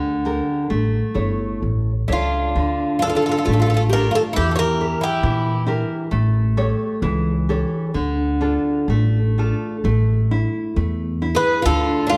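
A dark, moderately reverberant recital-hall sound frames this mournful, longing fado-style ballad in D harmonic minor, drifting rubato in 2/4 at around 62-70 BPM. A bright, fingerpicked nylon-string guitar and a woody pizzicato upright bass sit up front and carry the piece throughout. A metallic Greek bouzouki with double strings takes the melody, shadowed by a shimmering, octave-doubled twelve-string acoustic guitar as a second line; both enter at 2.1 s, drop out at 5.6 s and return briefly in the closing seconds of this fragment.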